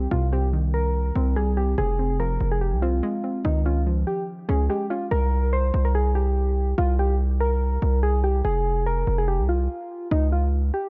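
Opening together, a warbling, vintage electric-piano-like synth melody with chorus, filtering and delay, a soft, round pluck with chorus that drops out at 5.1 seconds, and a heavy, saturated 808-style bass up front set a melancholic, brooding half-time trap groove at 144 BPM in C phrygian, moving from Cm through Fm to Dbadd9 in a dry, dark mix cut from a longer piece.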